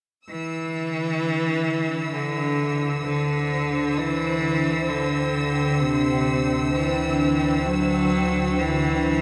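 A bright, biting solo cello carries the melody up front from 0.3 s, its vibrato-laden line wrapped in tape echo, while a clear violin section holds a high, lush texture behind it in this weightless, serene ambient excerpt at 65 BPM in 4/4, tuned to A4 = 435 Hz. An ethereal, airy pad joins at 1.0 s with slow-attack sustained chords thickened by ensemble chorus, and a deep, ominous drone fades in underneath from 2.6 s, rumbling with a nasal, ring-modulated edge. The passage rests on a D7sus4 chord, and the whole mix sits in a huge, wet reverb with a long 7.9 s decay.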